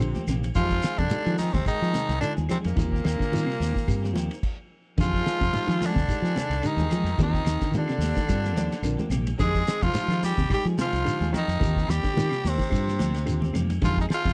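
A driving 109 BPM afrobeat groove with lightly swung sixteenths, played by a thuddy, cloth-damped drum kit with a fat snare and dark cymbals, grainy shekere, woody claves and bright high-tuned congas in the background, underpins an intense F dorian vamp between Eb6 and Fm7, where a gritty, up-front tenor saxophone leads over a growling, breathy second tenor and a punchy baritone saxophone, while a reedy electric piano, a dark fingered semi-hollow guitar playing arpeggios through spring reverb, a picked semi-hollow guitar adding chorused stabs and a warm fingered electric bass fill out the dry, close 1970s-style sound, with the band halting briefly from 4.4 to 5.0 seconds before the vamp returns in this excerpt from a longer piece.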